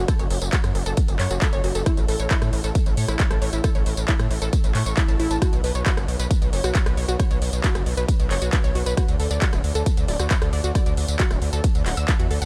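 A gritty, distorted synth bass with a nasal, oscillator-synced sawtooth bite sits up front and pumps against a layered, punchy electronic kick, while a lush, detuned unison pluck spins arpeggios through dub echo and an analog drum machine adds tape-warm handclaps, hi-hat, ride cymbal, rim click and tambourine in this driving, soaring uplifting trance excerpt at 135 BPM, moving from F#m through A and Bsus2 to D in a dark, dry production.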